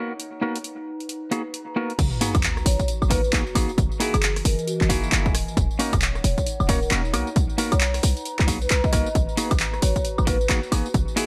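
Clean, compressed stabs from a semi-hollow electric guitar sit up front in this bouncy, soulful two-step UK garage excerpt, their pitch drifting with a warble and trailed by tape echo. It moves at 134 BPM in 4/4 with a 61% swing on the sixteenths, in G# minor, while a dark, lo-fi pad hums beneath from the start, detuned and ring-modulated, with chorus, its own reverb and sidechain pumping. An analog drum machine adds crash cymbal, handclaps, hi-hat, rim click, tambourine and woodblock almost at once. At 2.0 seconds the drop arrives with a very quiet sub drop impact, a tape-warm electronic kick and a short, tight 808-style bass whose sine body carries a fast attack and a noise layer. From 2.7 seconds a mellow vibraphone played with soft mallets rings in the background, its metallic tone also carried by tape echo, over chords that move through Bmaj7, G#m9, F#13 and D#m7 in a dry mix that keeps the bass and drum machine forward.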